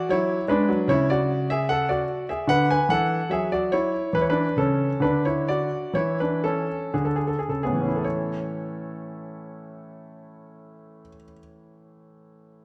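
Classical piano in a baroque-style suite movement, this brief excerpt cut from a longer piece has a dance-like, flowing character in A major, unfolding in 4/4 with a free rubato between 53 and 78 BPM. A solo baby grand carries the whole passage, its tone clear and intimate, sitting up front with natural colour and the mechanical sound of its action plainly audible, spanning A2 to G#5. The opening span slows down across its first 8.0 seconds, moving from E through A over C#, B minor over D and a B minor eleventh over C# before settling on a bare E fifth. At 8.0 seconds a second section begins on an A chord, continuing until the piano falls silent at 12.6 seconds. A moderate scoring-stage reverb lends the instrument a gentle sense of space, with a decay of 1.9 seconds.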